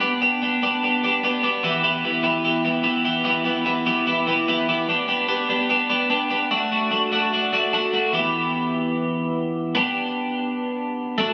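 A straight, steady 4/4 pulse drives this short, moody rock fragment, which is cut from a longer piece and carries a bittersweet feel. A single twelve-string electric guitar plays alone as the solo voice for the full 11.3 seconds. It is picked, clean and compressed, and it sits up front in a range from E3 to G4, dressed in lush chorus and tape echo. The harmony moves through G/B, Em, G/B and D/A before a second passage begins at 8.1 s, returning to Em and then G/B. The sound is that of a phone recording made in the room, with club reverb, light reverb with digital ambience and overall compression, and a top end that stops at 7.7 kHz.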